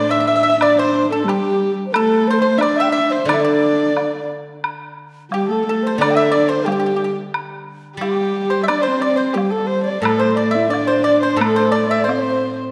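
A damp scoring-stage reverb with a long tail surrounds this short, cut-out passage of Chinese traditional chamber music, which feels pastoral and festive and moves in a loose, rubato two-beat metre. The end-blown bamboo xiao carries the melody with an airy, reedy tone, tongued and touched with vibrato. Beneath it, a dark, husky horsehead fiddle sits up front in its lower register, its woody horsehair strings bowed with vibrato and portamento. A dry, percussive pipa, plucked with fingerpicks, and an intimate erhu with a soft attack, light vibrato and sliding portamento weave further second lines around the tune. A ringing, silvery steel-string zither supplies low accompaniment, and a close, bright woodblock joins at 0.6 s. The opening phrase gives way to a new section at 4.6 s, and the ensemble plays on until the cut at 12.7 s.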